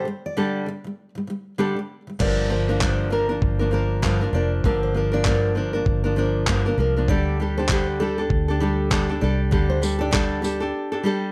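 Swung sixteenths in 4/4 give this wistful, reflective acoustic pop piece a loose, unhurried sway. It opens with a short break on Dsus4 carried by the guitars alone: an up-front, classical-toned nylon-string guitar fingerpicks the accompaniment, while a full-bodied jumbo steel-string sits in the background with high fingerpicked arpeggios. At 2.2 s the chord moves to Gm7 and the rhythm section enters, with a dark, round, foam-muted electric bass that is punchy in the low register. Alongside it comes a gritty, overdriven sampler-style drum kit, placed up front and re-recorded in a small room, with a thumpy kick, handclaps, tambourine and crash cymbal. The harmony returns to Dsus4 at 7.1 s, and a moderate studio reverb gives the whole mix a gentle sense of space.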